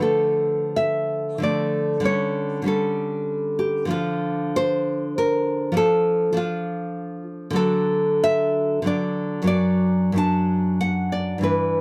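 A fingerpicked nylon-string guitar sits up front in this short romantic passage for solo classical guitar, a bright, acoustic tone with the occasional finger squeak audible on the strings. The guitar plays alone for the full 11.8 seconds in a flexible 3/4 with rubato, with the tempo moving between 77 and 102 BPM and the part covering F#2 to A5. The harmony opens in D minor, moving through Dm, A7/D and Dm/F, then turns to D major at 7.6 s and rests on D/F#, which lends the passage a sunny, warm glow. Close, detailed microphones capture the instrument in a moderate studio reverb. The clip is cut from a longer piece, so it stops within its opening section.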